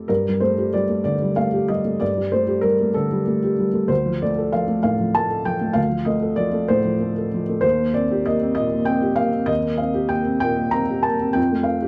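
Dark, warm production with light reverb frames a felt-muted upright piano, its muted, boxy tone sitting up front with audible action noise. This reflective, wistful fragment of neoclassical minimalist piano moves in a rubato 6/8, the solo piano drifting from Gsus2 through Dm7 and Cm7/Eb before reaching Fadd9 at 11.4 seconds. Cut from a longer piece, it runs just under 12 seconds.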